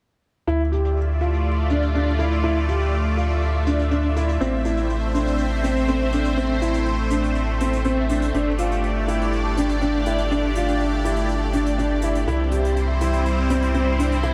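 Piano and strings electronica in D minor at 122 BPM in 4/4 with a straight feel, this hypnotic, melancholic excerpt moves through Dmadd9, Am, Gsus2 and C. An upright piano plays a riff between C4 and G4, its woody, boxy tone carrying audible action noise and long sustain, coloured by analog chorus and delay. Beneath it, a round sine sub bass holds the low end from G1 to D2, deep and up front with a fast attack. A thick, detuned sawtooth and square-wave pad in unison, with a sub octave and slow attack, sustains bright chords from G3 to E5 through chorus and phaser. Far in the background, brushed acoustic hi-hats sound distant and roomy, low-pass filtered, while a huge ambient reverb with an 8.1 s tail soaks the whole dreamy mix.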